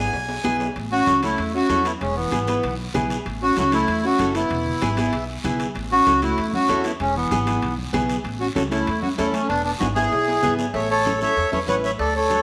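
Cumbia with a festive, joyful lilt, this short cut from a longer piece is led by an up-front accordion whose reedy, dark, smooth tone carries a slow beating shimmer. Beneath it, a classical nylon-string guitar with fresh strings is fingerpicked in accompaniment, its finger squeaks audible, while a woody, growly upright bass with steel strings plays pizzicato with a thumpy low end. A clean, fingered electric guitar with a mellow, dark sound joins at 0.9 seconds to add a second line. The percussion sits farther back: a raspy, distant guiro, bright thin-skinned congas in the background, and very quiet timbales and cowbell whose metal shells ring with a compressed, saturated edge, with a drum fill opening the track and another arriving at 9.8 seconds. The mix is bathed in a wet echo chamber reverb over a small room ambience.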